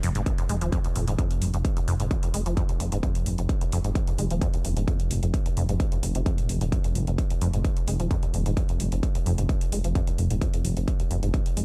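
A squelchy, resonant acid saw riff with subtle chorus, analog delay and a filter sweep rides over a deep, rumbling detuned saw bass in F minor, both pumping against a distorted, up-front kick that enters at 0.3 seconds and metallic hi-hats, making this short cut of driving peak-time techno at 130 BPM feel intense and hypnotic in a dry, gritty hardware sound.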